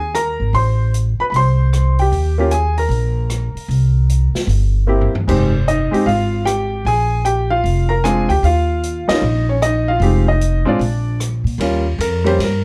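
A dark, lightly reverberant production frames this short jazz piano trio cut in Eb major, swinging at 152 BPM with a playful, sophisticated air. A clear, up-front concert grand carries the melody over a woody, thumpy pizzicato upright bass on gut strings, while an acoustic kit with dark cymbals, a medium-tuned snare and a boomy kick sits further back. The drums slip in a fill at 4.9 seconds, the band hits an accent at 9.0 seconds, and the piano takes a brief solo from 11.6 seconds as the harmony lands on Eb9.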